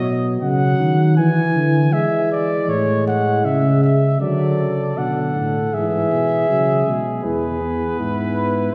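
Heard from further back in a reverberant concert hall, this short passage cut from a longer piece is a stately, elegant classical canzona for brass ensemble in an imitative style. A mellow trumpet with light vibrato carries the melody up front, a dark trombone with a smooth top supplies the accompaniment, and a close-miked tuba anchors the bass. At 4.2 seconds a flugelhorn joins with a softer second line beneath the trumpet.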